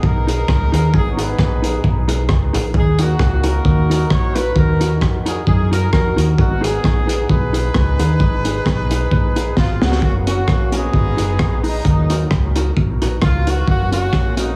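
This slice of a longer piece has a heavily compressed, radio-like sound, with light reverb and a small-room studio ambience. It is a bouncy, cheerful ska groove with a light swing on the eighth notes. Up front, a crunchy breakbeat drum kit plays kick, snare, rim click and hi-hat. Its sound is gritty and saturated, with a punchy kick, a high-tuned snare and a rolled-off top, and a short drum fill at 9.6 seconds leads into a new section at 10.0 seconds. Beneath it, a deep, fingered dub bass gives a round, foam-muted low end. A tight, pop-styled horn section with light vibrato and dub echo carries the melody, while a mellow, clean and compressed electric guitar enters at 0.3 seconds as accompaniment with its own dub echo.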